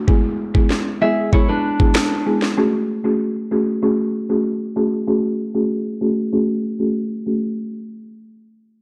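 A dry, gritty cassette-tape sound with light digital reverb frames this tough, sultry dancehall excerpt in F# minor at 96 BPM, which moves from E to F#madd9 under a filter sweep. A buzzing marimba played with soft mallets carries the accompaniment throughout, sounding dark, round and woody behind a low-pass filter, while an electronic island pop kit with a knocking kick, sharp snare and finger snaps sits up front until 2.6 seconds beside a very quiet downlifter. Between 1.0 and 2.4 seconds, a full-bodied, fingerpicked nylon-string guitar adds brief filtered arpeggios.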